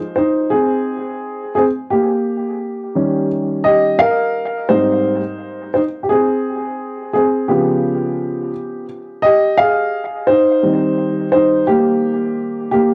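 A boxy, intimate cassette-taped sound sets this short hip hop excerpt in a small room with a moderate reverb tail, where a dark baby grand piano plays alone from 0.0 to 12.9 seconds, up front with audible action noise and analog delay. The mellow, nocturnal mood unfolds at 86 BPM in 4/4 with a swung sixteenth-note feel, the piano ranging from Ab2 to F5 as it moves through a rootless Fm7, Eb9, Abmaj7, Db7 and Eb6.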